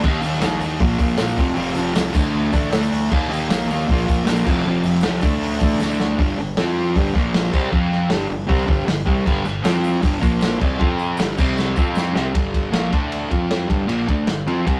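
Swaggering and menacing, this garage rock cut is driven by a dark, double-tracked fuzz guitar riff up front over a gritty, saturated breakbeat drum kit with dark cymbals and a tight kick, while a bright, overdriven fingered bass growls in the background. A very quiet, jingly tambourine plays along until 6.0 seconds and returns at 9.3 seconds, and drum fills, one at 11.6 seconds, mark the turns between sections. The sound is rough and rehearsal-room raw, with tube saturation and a touch of light reverb.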